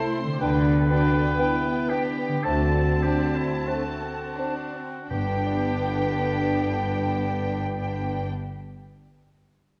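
A clear, intense violin section sings the high melody in this lyrical G major slow romantic movement for symphony orchestra, taken at a rubato 40-64 BPM that slows over the first 5.1 seconds, with an airy flute, a distant oboe, a very quiet clarinet and a lush second violin line below weaving second lines, while a mellow bassoon and a smooth viola section fill out the accompaniment, a dark horn section holds very quiet sustained chords, a ringing fingerpicked harp plays arpeggios, clear cellos and biting double basses anchor the bass from 0.4 seconds, and hard-mallet timpani enter at 5.1 seconds, all set in a wet scoring-stage reverb and colored by the warbling pitch drift of worn old cassette tape.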